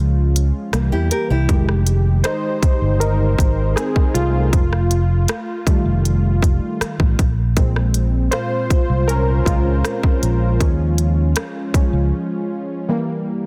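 Detuned sawtooth analog keys with chorus and a filter sweep carry a mellow solo through this longing, late-night contemporary R&B fragment in F minor at 79 BPM, over a round, amped fingered electric bass and an up-front electronic trap kit of crisp hats, hard-clipped kick and rim click, while a fingerpicked nylon-string guitar with tape echo adds brief arpeggios from 0.9 to 1.7 s, the whole sitting in digital ambience with a dense, heavily limited modern master.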